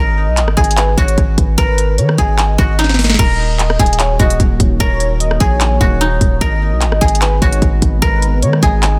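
A plucked guzheng opens this menacing trap excerpt at 149 BPM in a half-time feel in Eb minor, its silvery, ringing notes carrying the melody through a delay, while a velvety synth lead with chorus, vibrato and delay sits just above it as a second line. A heavy, punchy 808-style bass with a fast attack and decaying tail hits up front from the start, and the electronic trap kit joins at 0.4 seconds with a hard-clipped kick, sharp snare, crisp hi-hats, handclaps, rim clicks and a crash cymbal. A drum fill at 2.8 seconds leads out of the opening section over an Ab5 chord into a move from Ebm to Abm. At 4.1 seconds a deep, moody ambient pad with a slow attack, detuned warble and its own reverb fades in behind everything, holding dark sustained chords in the background. The mix is dense and heavily limited, with little reverb on the dry, hard-hitting drums and bass, which dominate the sound.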